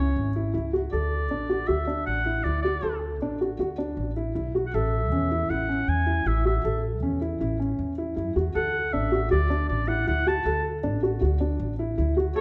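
Contemporary chamber music in an uneven 5/4 metre at 157 BPM, this short excerpt from a longer piece feels urgent yet pensive, with an oboe carrying the melody in a vintage, classical-style voice up front over a felt-muted upright piano playing soft, intimate arpeggios with audible action noise and a boxy, mellow tone. An upright bass, plucked on gut strings, adds a woody, thumpy low line as the harmony moves from C#m through D and A and back to D. A moderate recital-hall reverb and a dark, warm production, with nothing above 10.3 kHz, round off the sound, and all three parts play together from the start to about 12 seconds.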